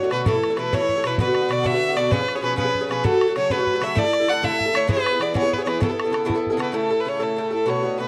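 Rollicking and bright, this short excerpt of a Celtic jig in 6/8 has a straight feel. A rich, smooth fiddle carries the melody up front, bowed by one player with light vibrato and an even tone, and a slapback echo trails its line. Beside it, an acoustic Irish bouzouki is picked on double strings, its metallic ring filling out the accompaniment through a run of chords that settles from Aadd9 onto A. A boomy, open bodhran drives the rhythm from the start until 6.7 seconds. At that point a reedy, airy accordion drone enters in the background with a dry tuning and plays out the final stretch to 8.1 seconds. The sound is close and dry, with only light reverb, in the manner of a 1970s studio recording.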